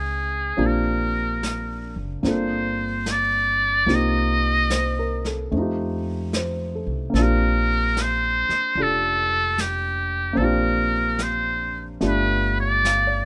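Swinging gently at 73 BPM in 4/4, this tender, late-night jazz ballad excerpt in Bb major features a buzzy, metal-muted trumpet carrying the melody up front with vibrato and scooped notes over a deep-bassed concert grand piano, a woody, thumpy pizzicato upright bass, and a vintage brush kit that enters at 0.6 seconds with a rolled-off top, all with little reverb.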